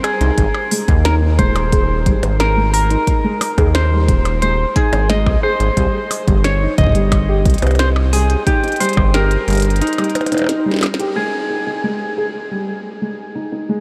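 A straight 4/4 pulse of deep, tape-warm electronic kick and a glitchy kit of clicky hats, tiny snare and percussion blips with tape echo drives this wistful IDM fragment, where a rubbery, wave-folded square bass sits up front beneath a dark, clean electric guitar melody and boxy felt-muted upright piano arpeggios, both trailed by diffuse ambient delay, in a dreamy mix soaked in huge reverb, until a drum fill at 10.5 s and a band accent lead into a brief closing section at 11.2 s carried by guitar and piano.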